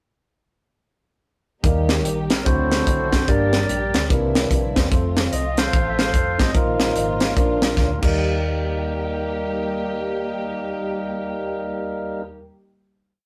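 A rough rehearsal-room recording with moderate reverb carries this uplifting uptempo gospel piece in Eb major at 147 BPM, swung in 4/4. A fat, clean tonewheel organ sits up front with held chords and takes the solo from 1.6 seconds, over a driving two-beat praise groove from a tight, dry funk kit with a high-tuned snare. The kit ends with a fill at 7.8 seconds, leading into a final hit at 8.2 seconds, while a round, dark hollow-body bass walks and runs with slides and chromatic approach notes, a clean tine electric piano pushes close-voiced chords with grace notes, and a lush, woody string section holds a vibrato pad beneath.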